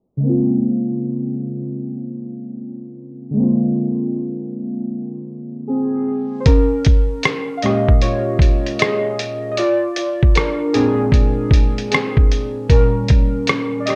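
Warbling lo-fi synth keys open this hazy, nostalgic lo-fi hip hop excerpt at 0.2 seconds, their mellow triangle and sawtooth tones softened by chorus, cassette tape colour and a low-pass filter, with each fast-attack note decaying. Through the opening passage a filter sweep shapes the keys as they move from Bbm7 to Bb9. At 6.5 seconds a sampler-style drum kit comes in up front with a thumpy kick, hi-hat and rim click, its sound compressed, pitched down, muffled and roughened by vintage 12-bit grit, as if re-recorded in a large room. Over this unhurried, swung groove the keys take a solo, cycling through Bbm7 and Bb9 before settling on Bbm6. Light reverb and a low-pass filter over the whole mix keep the sound dusty and intimate until the cut at 14.0 seconds.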